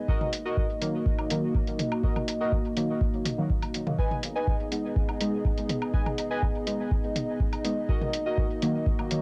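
A dark analog pad opens this hazy, cavernous dub techno excerpt in G# minor at 123 BPM, its detuned, wave-folded sustained chords pumping under sidechain and colored by chorus and cassette tape as they move from D#m to G#m and back. A dry, deep electronic kick sits up front with a muffled hi-hat and layered toms and woodblock that feed into dub echo, while warbly lo-fi synth keys play a nostalgic riff through phaser and echo. From 0.8 s, deep mellow chord stabs with fast attacks and decaying tails add soft, detuned weight, all set in light reverb with the warm intimacy of a home cassette recording.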